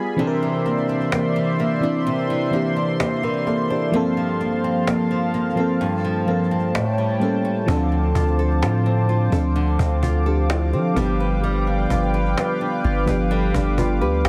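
A mellow FM electric piano opens with a fill over a shimmering, retro pulse-width pad and fingerpicked nylon-string guitar arpeggios touched with digital delay, while a snappy cajon played with soft hands joins at 0.2 seconds in this moody, sensual contemporary R&B passage at 64 BPM in G dorian. The round, dark electric piano carries chorus, and the chords drift from C9 through Gm11 and A7b9 toward Dm7 and G7. At 7.7 seconds a deep, up-front 808-style bass arrives with long, decaying sine notes, all set in light small-room reverb under a dense, heavily limited modern master.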